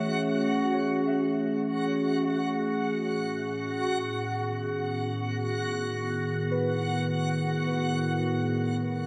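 Ambient and in free time, this weightless, peaceful excerpt drifts from Amaj7 to G#m/A at 3.0 seconds as an up-front, warbling, nostalgic tape-like pad holds dark, detuned lo-fi chords with chorus, while a reversed, granular swelling texture shimmers brightly alongside it and a soft, pure FM synth bell plays mellow arpeggios through phaser and diffuse delay in the background, all of it set in a dreamy plate-reverb-soaked mix with a rolled-off top end.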